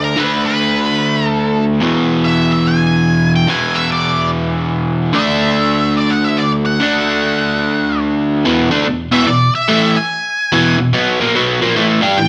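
Swaggering and driving, this rock passage, cut from a longer piece, moves with a swung eighth-note feel in 4/4. An overdriven electric guitar carries the riff throughout, its bright, picked tone double-tracked, compressed and placed up front, ranging from its low E2 up to G4. Above it, an octave-fuzz lead guitar plays the melody in a dark, fuzzy voice shaped by wah, distortion and plate reverb, sitting lower in the mix than the riff. The harmony moves from D5 to E and back through D before the music shifts into a new section at 8.5 seconds, landing on A5 at 11.8 seconds. A moderate large-studio reverb gives both guitars a sense of space.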